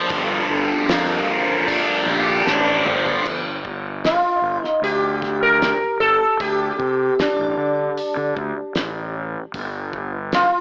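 A thuddy, cloth-damped drum kit with dark cymbals and a fat snare keeps a straight, hypnotic four-beat pulse under a punchy, overdriven fingered bass in this mysterious psychedelic rock excerpt. At the start a bright, double-tracked fuzz guitar riff runs up front over a very quiet, swirling phased string machine, and both stop at about 3.3 seconds after a drum fill. A buzzing, shimmering sitar with tape echo then takes the melody from 4.1 seconds, all set in moderate spring reverb with an AM-radio sound.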